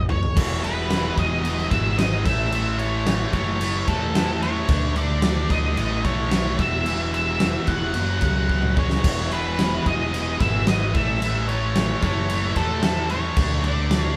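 A live-in-one-room sound with moderate large studio reverb frames this cathartic, restless excerpt of quiet-loud alternative rock at 111 BPM, where a big, dark, up-front drum kit with a fat snare and punchy kick opens on a fill and fills again at 8.5 seconds, a growly overdriven picked bass punches underneath, a bright compressed distorted guitar and a tighter distorted guitar in the background drive riffs from E2 to D4 over changes from E through A, D5, E5 and F#5, and a dark octave-fuzz lead guitar carries the melody between A4 and F#5.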